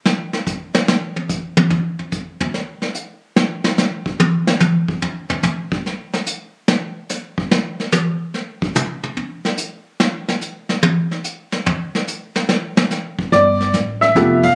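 Relaxed and swinging, this jazz piano trio excerpt moves at 145 BPM in 4/4 with a swing feel, set in G mixolydian. A vintage brush drum kit carries the opening as a solo until 13.3 seconds, working across brushed snare, hi-hat, ride cymbal, toms and a punchy kick, with a medium-tuned snare and a warm, rolled-off top that sits up front in a small-room sound. At 13.3 seconds the bright upright piano and the upright bass come in together on a G9 chord. The piano is brilliant and intimate, with audible action noise close to the listener, while the plucked bass is thumpy and woody, its steel strings giving a warm, low pulse. The band hits an accent at 14.4 seconds, and the whole performance has a casual, phone-in-the-room quality with a light club reverb.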